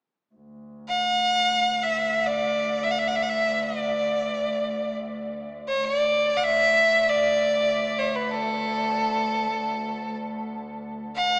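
Heard through a small speaker, this excerpt rings in a cathedral-like hall whose long reverb trails behind every note. In an Arabic maqam setting full of passion and festive spirit, a single bowed double bass sustains a rich, smooth drone on D2 from 0.3 seconds, sitting distant and even beneath the music. At 0.9 seconds a single violin enters up front with the melody, its biting, intense tone carrying vibrato and an airy bow.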